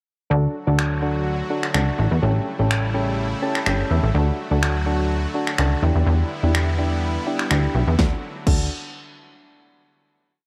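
Summery and upbeat, this short dance-pop piece in D major moves at 125 BPM, with a plucky, funky analog bass playing a syncopated figure up front and soft, warbling electric-piano-like synth keys adding chorused, close-voiced syncopated chords over a lush supersaw pad, all three breathing with sidechain pumping. A punchy pop drum kit enters at 0.8 s with a four-on-the-floor beat, fat snare, finger snaps and crash cymbal, while the chords move through D, A7 and Em7 and the keys slip in a fill at 3.2 s. The whole thing sits in light reverb and closes on a final D chord from 8.0 s.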